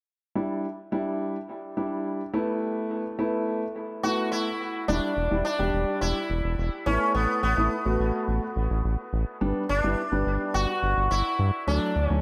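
A dark, mellow concert grand piano with audible action noise and dub echo opens this upbeat, nostalgic synth-pop fragment at 106 BPM, joined at 4.0 seconds by a buzzing, shimmering sitar melody, also echoed, and at 4.9 seconds by a round, deep analog bass, all bathed in a wet spring reverb over chords moving from Em7 and Asus2 to G and D.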